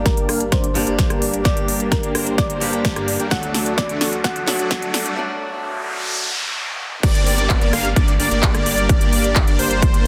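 A dense, heavily limited modern master with light reverb opens this powerful, euphoric slice of festival progressive house, cut from a longer piece and built in a straight 4/4 feel. For the first 7.0 seconds it is a build-up: huge, detuned supersaw chords carry the riff through a filter sweep, steeped in lush chorus and cassette tape colour and sidechain pumping, while a deep, saturated sub bass sits in the background and a very quiet lush unison pad holds sustained chords. Over this, a round, tine-like synth pluck with a thumb-piano character plays a gentle, mellow melody until 5.1 seconds, and a boxy fingerpicked acoustic guitar with a swing feel adds pumping accompaniment until 6.3 seconds. A drum fill from the big-room kit, with punchy snare, crisp hats, handclaps, rim clicks and crash, drives the build alongside an overdriven, up-front electronic kick, as a riser gives way to a noise sweep in the background. 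At the drop, at 7.0 seconds, a thick, bold unison lead enters with bright, wave-folded arpeggios touched by vibrato and analog chorus, riding the harmony as it returns from D to G minor.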